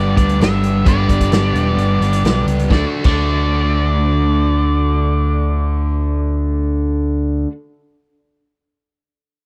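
A growly, overdriven picked bass sits up front in this driving, swaggering classic rock fragment, cut from a longer piece and moving in a straight four-four feel. Beside it, a raw garage drum kit with a punchy kick, medium-tuned snare, hi-hat and crash cymbal plays from 0.2 to 3.2 seconds, its gritty, saturated sound carrying a rolled-off top and the character of a stone room. Two rhythm guitars carry the riff: a bright, cranked stack guitar in overdrive and a warm, hollow-bodied semi-hollow guitar, also overdriven and picked. Above them, a dark octave-fuzz lead guitar plays a narrow melody, sitting lower in the mix than the bass and drums. The harmony moves from G to D at 2.7 seconds, and the whole fragment has the dry, close feel of a 1970s-style studio with a small room reverb.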